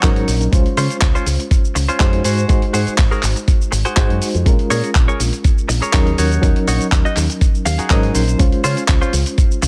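Set in a digital ambience, this sleek, cosmic nu-disco excerpt at 122 BPM rides a gritty, thumpy electronic kick up front and a dusty soul sampler-style kit of handclaps, hi-hat and shaker beneath a fingered electric bass with envelope filter and sidechain pumping, a reedy electric piano with fast tremolo and tape echo, and a twangy, scooped clean electric guitar riff with subtle chorus that plays a fill at 7.4 seconds over chords moving from Ebm7 through Dbmaj7, Ab7 and Bbm7.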